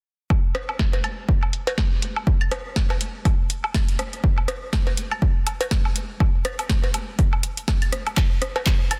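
Cool and clinical, this techno excerpt at 122 BPM in 4/4 with a 57% swing on the 16ths is built on an up-front, punchy, tape-warm electronic kick recorded in a small room, joined by a booming, overdriven analog drum machine whose crisp snare, metallic hi-hats and handclaps sit in a short room with low-pass filtering on the snare and hats, while layered electronic woodblock, rim click, cowbell and claves add soft clipping and delay, all set in a digital ambience with a dense, heavily limited modern master before a drum fill at 8.2 s.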